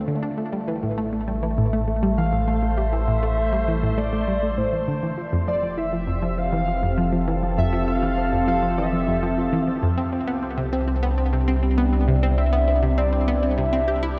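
Cosmic and mysterious, this ambient, sequencer-driven space music moves at 100 BPM in a straight 4/4, set in A minor and cut from a longer piece. An evolving wavetable pad holds sustained chords from the start, its detuned, morphing tone colored by phaser, built-in reverb and shimmer reverb as the harmony passes from Am7 to Fmaj7 at 5.2 seconds and Cmaj7 at 10.0 seconds. Up front, a nasal, sawtooth analog pluck plays a riff with a fast attack and short decay, treated with chorus, phaser, shimmer reverb and delay, while a filter sweep runs across the synth arpeggio sound throughout. Beneath it, a round, deep analog bass anchors the low end, wave-folded and sitting forward in the mix. At 2.2 seconds a shimmering, retro pulse-width lead enters with a vibrato-laden melody, its tone thickened by chorus, cassette tape, shimmer reverb and delay. The whole is bathed in a lush hall reverb with a dark, warm production.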